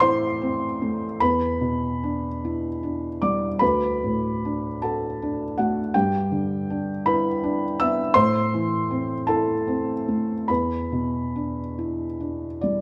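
A soft, intimate piano sound sits up front in a light reverb, its hammers dulled by thick felt. This is neoclassical minimalist piano in a melancholic, reflective mood, a fragment cut from a longer piece and lasting 12.8 seconds. A felt-muted upright piano plays alone throughout, ranging from D2 up to E6 and tuned to A4 = 441 Hz. The music moves in a slow, rubato 6/8, with the dotted-quarter pulse hovering around 46-55 BPM, and sits in A dorian. Its harmony drifts from Am through Em7, D and G6 before returning to Am at 8.1 seconds. It then settles on an E7 chord with its third omitted as the passage breaks off.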